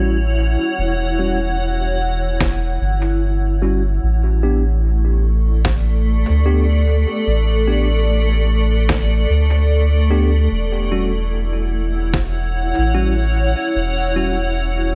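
Ambient dub with a deep, hazy mood, cut from a longer piece in a swung 4/4 that opens on Em69, moves to Asus4 and returns. A blurred, evolving granular cloud pad holds sustained chords up front beside a round, soft sub bass, while a bell-like tine electric piano plays stabs through a low-pass filter sweep and dub echo. Kick and snare enter at 2.4 seconds and stop at 12.3 seconds, the deep kick sitting in the background and the muffled, pitched-down snare overdriven and echoed, all in a light digital ambience.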